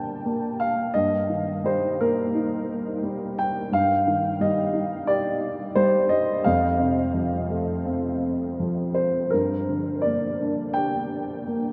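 A vast, echoing space surrounds this brief classical fragment, with a huge, wet reverb whose long tail hangs in the air behind every phrase. At its center sits a lone baby grand piano, placed up front, with a dark, mellow and slightly boxy tone and a short sustain of its own. Played in a free, rubato 4/4, the lyrical solo reaches from F2 up to A5 and fills the full 11.7 seconds. Its harmony moves from G minor through E-flat colorings, including a lush Ebmaj13 over G, before arriving on F at 6.4 seconds and settling back on G minor. The mood is hopeful and warm, and the clip sounds lifted from a longer piece.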